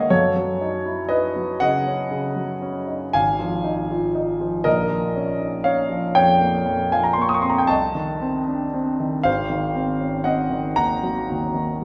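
A solo grand piano opens on a Gbm6 chord in this hazy, serene impressionist classical passage, drifting in rubato 9/8 at a slow 40 beats per minute of dotted quarters. The piano sits up front with a warm, present tone and long sustain, spanning Ab1 to Eb6 as the harmony moves through Ab5, Bbm, Cm6 and Ab13, the last arriving at 9.3 seconds. A wet recital hall reverb surrounds it in this 11.8-second fragment cut from a longer piece.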